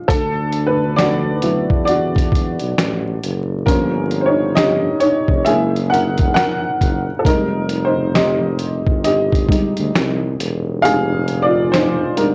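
A dark, worn upright piano opens this melancholic, nostalgic lo-fi hip hop excerpt at 0.0 seconds and carries a solo over a slow, swung groove. The piano sits up front with a woody, boxy, slightly detuned tone, short sustain and audible action noise, softened further by cassette tape and a low-pass filter. A mellow tuba takes the bass role in a jazz style with scooped notes, sounding distant and roomy with a touch of transformer saturation. The sampler-style drum kit is compressed and muffled, with a thumpy kick, medium-tuned snare and hi-hat, re-recorded in a large room yet placed up front; the kick drops out from 10.8 seconds. The harmony moves through D69, Gm7b5, Gb9 and Fm9, and light reverb, gritty hardware character and vinyl crackle give the whole passage a nostalgic haze until it cuts off at 12.3 seconds.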